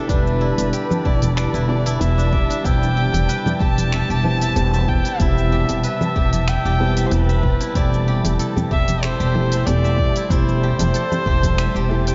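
A bowed kamancheh carries the melody with vibrato and portamento through analog delay in this hypnotic, meditative organic downtempo excerpt at 94 BPM, over chords that move from Em7 to Cmaj7/E at 2.6 seconds and Am7/E at 7.8 seconds. A woody pizzicato upright bass sits up front beside a deep electronic kick. Both the bass and a soft, muted felt upright piano pump with the sidechain, while an electronic kit adds smooth hats, finger snaps and shaker and very quiet bongos and congas fill in the percussion. A silvery, ringing steel-string zither plays fingerpicked arpeggios, joined by a very quiet warbling tape-like pad and an airy, wind-like noise texture in the background of a dreamy mix soaked in huge ambient reverb.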